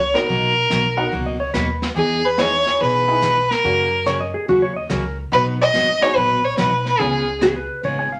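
A swung 4/4 feel at 143 BPM in B major drives this short, playful western swing cut, with a small-room brushed drum kit and a thumpy, woody upright bass underneath. Up front, a smooth bowed fiddle carries the melody with light vibrato, and at 1.0 seconds a dark, compressed lap steel joins with a sliding second line and volume swells. Jangly vintage tack piano and a bright, full-bodied jumbo acoustic guitar fill in the changes from Bmaj7 through Emaj7 and F# toward C#7, set in a wet studio reverb.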